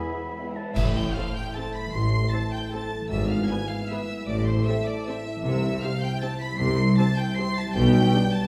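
This orchestral ballroom waltz in A minor moves in a sweeping, dark 3/4 at 154 BPM, with uneven beats and rubato, and it is cut from a longer piece. A studio violin section carries the smooth, vibrato-laden melody high above a lush, intense symphonic violin section on the second line. Warm violas and rich cellos fill in the background, while a ringing, fingerpicked concert harp spreads arpeggios across a broad range. The opening moments bring brief touches of a bright clarinet, a pure flute section, a close-miked oboe, a clear bassoon and a soft-attacked French horn section holding a dark chord over the E harmony. At 0.8 s the music lands on A minor as a mellow, roomy tuba and smooth double basses join the bass line, and clash cymbals and concert bass drum strike a dark accent that ends by 1.5 s. The harmony then passes through E/G#, A minor, C and G/B, all heard from further back in a reverberant recital hall.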